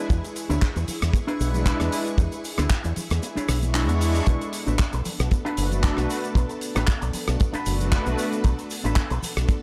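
A lightly swung sixteenth-note groove from a tight, dry kick up front and a damped 70s drum kit with handclaps, hi-hat, rim click and shaker, dusted by very quiet maracas and congas, drives this sleek, groovy nu-disco excerpt. A round, fingered electric bass with an envelope filter sits forward, while a clean, twangy electric guitar with an envelope filter plays a compressed, scooped riff with subtle chorus and tape echo. A lush string machine ensemble holds sustained chords in the background with sidechain pumping, and a warbling, detuned analog pad with chorus enters at 1.0 s. The kick drops out at 3.2 s, and a faint reverse cymbal sounds from 3.7 s, leading into the change from E7 to Bm7 at 4.3 s, all captured in a dry, gritty small-room recording.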